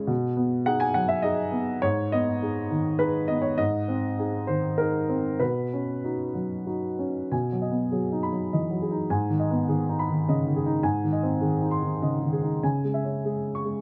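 Set in a lilting 3/4 with a rubato feel, the pulse drifts between 93 and 105 BPM, giving this neoclassical minimalist piano fragment an unhurried, breathing quality. A lone upright piano carries everything across its 13.8 seconds, ranging from G#2 up to C#6 in B major, with a woody, up-front tone that feels close enough to touch. The harmony moves through B6, G#m and G#, settling on Badd9 before the phrase begins again at 7.3 seconds and turns toward C#m at 12.6 seconds. The mood is hopeful and intimate. The sound is dry and detailed, with the microphones placed close to the instrument, so every note lands directly and warmly.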